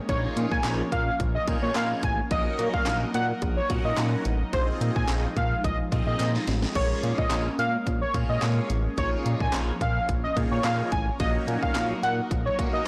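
A bold, nasal octave-doubled lead sits up front in this confident, energetic dance-pop excerpt at 108 BPM, its retro sawtooth-and-triangle tone carrying vibrato, chorus and digital delay as it plays the melody between C5 and Ab5. Beneath it, a glossy chorused synth bass with a mellow, detuned pulse-wave character anchors the low end, while a fat, bright polysynth supplies chords and an airy, breathy pad drifts in the background with chorus and phaser. The bass, polysynth, pad and lead all pump with sidechain compression against a punchy, overdriven house drum kit whose cracking snare, handclaps, hi-hat and crash sound as if re-recorded in a large room, with a drum fill at 6.2 seconds. A very quiet, crisp group handclap from a live room adds a human touch, and a barely audible downlifter runs until 2.3 seconds. The harmony moves through chords over a Bb bass such as Db69/Bb, Gb6/Bb and Fm7/Bb, passes through Bbm7, then returns to Db69/Bb and Gb6/Bb, all within a blown-out, overdriven mix with light reverb and lossy compression artefacts.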